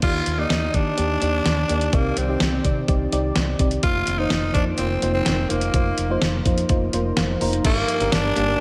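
A dramatic, nostalgic 1980s-style pop fragment at 126 BPM in 4/4, where an up-front, raspy tenor saxophone carries the melody with vibrato and slapback echo over a mellow, warbling FM electric piano (which adds a fill at 6.9 seconds), a growly, round fretless bass, and a clean 12-bit drum machine with a thumpy kick, fat snare, hi-hat, tambourine and crash, while a very quiet, ethereal pad enters at 2.1 seconds and punchy, detuned polysynth stabs arrive at 7.6 seconds on a Gm chord, all set in a lush hall for a big arena sound.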